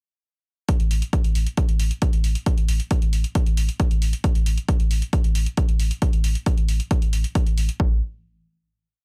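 A dry mix opens this short, industrial, driving peak-time techno piece at 135 BPM in straight 4/4, where a punchy, up-front four-on-the-floor electronic kick and analog closed and open electronic hi-hats, both tape-warm and re-recorded in a small room, carry the groove from 0.7 seconds while a deep, thick, saturated sub bass on A1 rumbles between the kicks with tube saturation, sidechain pumping and a low-pass filter until 8.0 seconds, as the piece reaches a final note from 7.8 seconds.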